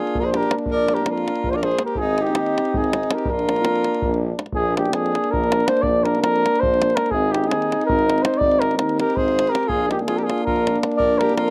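A mellow, lightly vibrato flugelhorn carries the melody up front with a slapback echo over a close, clear alto saxophone second line, a soft-attack French horn and a dark euphonium in the background, soon joined by a deep, dry davul and a vintage-toned tuba bass, in a wild, virtuosic excerpt of Balkan brass band folk in 7/8 that sounds recorded outdoors with little reverb, the saxophone dropping out at 4.2 seconds and returning at 9.0 seconds.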